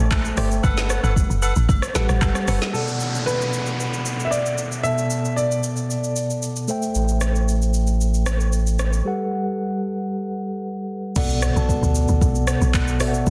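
A straight 4/4 groove from a smooth R&B drum kit with soft kick, woody snare and soft-clipped snare hits drives this relaxed amapiano clip, where a mellow tine electric piano carries the chords throughout, a round, dark log drum bass appears at the start and returns at 11.2 s, agogo bells and woodblock sit in the background early on alongside hollow, chorused organ stabs, a clear concert grand piano with digital delay takes the melody from 2.7 s, a downlifter and impact punctuate the transitions, and a thick saturated sub bass enters at 7.0 s, all within a dense, heavily limited modern master.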